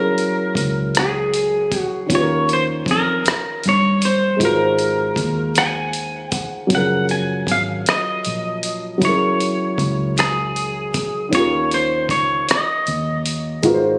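Caught on a phone in a lightly reverberant room and compressed, this 14-second slice of slow, sensual six-eight R&B in Gb lydian at 52 BPM puts a clean, twangy electric guitar up front on the melody, bathed in lush chorus and digital delay, over a dark, boxy grand piano, a round, punchy foam-muted fingered bass, and a gritty sampler-style soul kit of thumpy kick, hi-hat and rim click that enters at 0.2 seconds.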